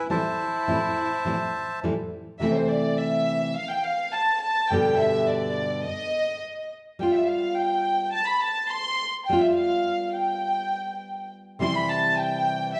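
A rubato 4/4 tango at 104 BPM in C major, this dramatic, sultry fragment opens with a reedy bandoneon melody that stops at 1.8 seconds, leaving a dark, bowed violin section with light vibrato to take a solo from 2.4 seconds over a full-bodied, fingerpicked nylon-string guitar with audible finger squeak, all set in a wet recital hall reverb as the chords move from Am7 through G7 to settle on C.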